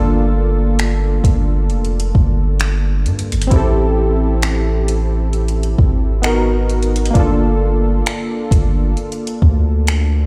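Swung sixteenths at a slow 66 BPM in 4/4 carry this moody, late-night contemporary R&B excerpt in G dorian: a soft-kicked electronic drum kit of finger snaps, metallic hi-hat and kick enters at 0.8 s over a deep, sine-toned 808-style bass with long decaying notes and round, detuned sawtooth analog keys with chorus and a filter sweep, each up front as the chords move from Gm7 to Am7 and Abm7 and back to Gm7, all heard through a big sound system in a bare stone room.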